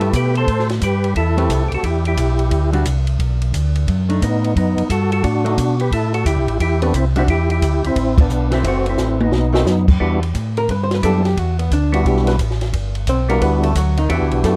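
Dark, lightly reverberant production frames a late-night, soulful soul jazz organ trio excerpt in E minor at a swung 176 BPM, where an up-front, lightly overdriven tonewheel organ with third-harmonic percussion, chorus vibrato and a stopped rotary speaker carries the melody over a round, key-clicking organ bass turning on a slow rotary speaker, clean, compressed hollow-body archtop guitar accompaniment, and a dry cocktail kit with dark cymbals, a high-tuned snare and a tight kick, until a band accent at 8.1 seconds and a drum fill at 9.0 seconds hand over to a picked guitar solo from 10.0 seconds.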